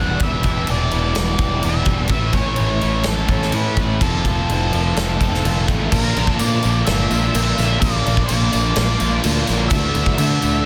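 A dense, heavily limited modern master sits in a small room reverb, giving this wistful, dreamy slice of shoegaze and dream pop rock a packed, hazy sound. Up front, a big acoustic rock kit drives a straight 4/4 feel with a punchy kick, a medium-tuned snare and bright crash cymbals, alongside a growling fingered electric bass whose overdriven tone cuts through with a gritty edge. Over the top, an octave-fuzz lead guitar carries the melody in a dark, distorted voice trailed by tape echo. Beneath it, a wall of guitars plays riffs: a thick, murky fuzz guitar, a double-tracked distorted guitar, and an overdriven semi-hollow guitar in the background, its hollow-body tone smeared by reverse reverb. A direct-recorded clean electric guitar adds compressed, twangy arpeggios very quietly, while the chords move from Em7 through A and F7 to Bb and Dadd9. At 5.9 seconds a second section begins and a jingly tambourine enters from a distant large room, shimmering faintly until 10.5 seconds, just before the cut at 10.7 seconds.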